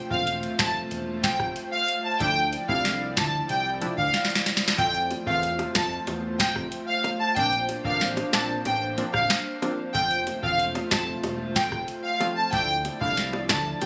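Captured on a phone in the room with light reverb and compression, this sunny, summery dancehall excerpt at 93 BPM in F major sets an up-front, lush violin section melody with vibrato and tape echo over a booming analog drum machine of deep kick, crisp snare, metallic hats, finger snaps and rim clicks, a fat sawtooth bass, a round, detuned analog pluck and an airy, breathy pad, the last two treated with chorus and sidechain pumping, while a drum fill arrives at 4.1 seconds and close, dry, low-tuned bongos join at 5.1 seconds.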